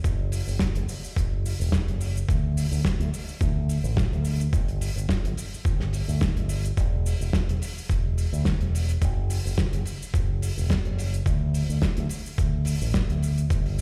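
A fingered electric bass with an envelope filter carries the low end of this sleek, sensual nu-disco excerpt, its bright, direct tone sitting up front alongside a gritty, thumpy electronic kick drum that is compressed, overdriven and given studio reverb. Behind them, a damped 70s drum kit with a fat snare, hi-hat and cabasa adds an airy, polished acoustic groove with a light swing on the 16ths. The whole track sounds as if played on a big sound system in a bare room, with a large studio reverb around it.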